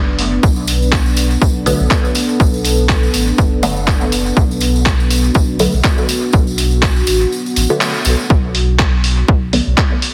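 A dark, chorused sawtooth ambient pad with 12-bit sampler grit opens this hypnotic, cavernous dub techno excerpt alongside a nasal, detuned chord stab steeped in phaser, cassette tape colour and dub echo and a round sine sub bass, these three pumping against an overdriven, punchy kick, while muffled sampler-style handclaps and hi-hat with dub echo and a jingly, close tambourine fill out the swung groove, the kick dropping out at 7.3 seconds before a filter sweep on the stab from 8.3 seconds, the whole mix squeezed into a heavily compressed radio sound.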